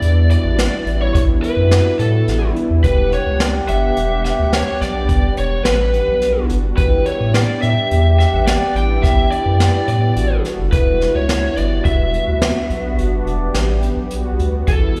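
Progressive instrumental band music in 7/4 at 106 BPM, this brooding, intricate excerpt sits in E dorian with a straight feel, cycling between A7sus4 and Em7. A lead guitar through a small cranked amp carries the melody with an overdriven, lo-fi bite and slapback echo, while a breathy trombone adds a distant, whispered second line in a jazz style with light vibrato, stopping at 14.4 seconds. Beneath them, an analog pad built from detuned sawtooth tones spreads a smooth, mellow bed, shimmering with chorus and slapback echo. A round, deep analog bass sits up front with a dark, sustained tone and a filter sweep, and a jazz kit played with brushes supplies hi-hat, a punchy kick and a high-tuned snare. The whole performance comes across as a live gig heard through a club PA, with light reverb and small-room ambience.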